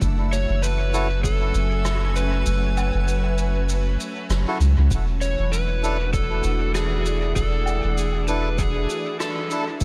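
A swung 4/4 groove from a background electronic kick, which drops out between 2.5 and 4.9 seconds, and a natural-sounding shaker, rim click and woodblock with dub echo carries this peaceful, spacious ambient dub excerpt, where a round, up-front sub bass underpins a bright, organ-like chorused pad holding sustained chords that move from F#m7 to E7sus4 beneath a dark, overdriven slide guitar melody and reedy, breathy melodica stabs, both trailing dub echoes through an echo-heavy small-room mix.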